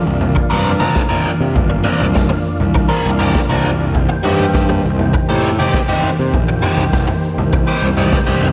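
A straight, steady 4/4 groove opens this mysterious, hypnotic psychedelic rock excerpt, cut from a longer piece. A raw garage drum kit sits up front with a boomy kick, a medium-tuned snare and toms, its saturated, gritty sound pumping in a small room with a rolled-off top. A fuzz-drenched picked electric bass adds a round, punchy low end. From 0.4 s, a biting, double-tracked overdriven guitar riff cuts through with a bright, flanged edge. A clean tonewheel organ holds sustained chords in the background through a slow rotary speaker and chorus vibrato, moving from Bb/C to Cm7 at 4.0 s, while a grainy tube shaker sits low behind it. A lush hall reverb soaks the whole mix in a dreamy haze.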